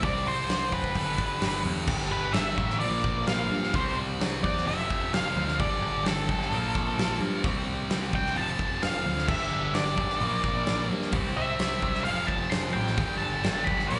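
Over a straight 4/4 pulse from a huge arena drum kit with its fat snare and punchy kick sitting up front, this bittersweet, restless quiet-loud alternative rock excerpt stacks a background fuzz guitar riff and a bright, high-gain heavy guitar riff on a growling, overdriven picked bass, while a dark octave-fuzz lead guitar with slapback echo breaks into a solo at 1.9 seconds, the performance heard as a live gig through the venue's PA with club reverb and a dulled top end.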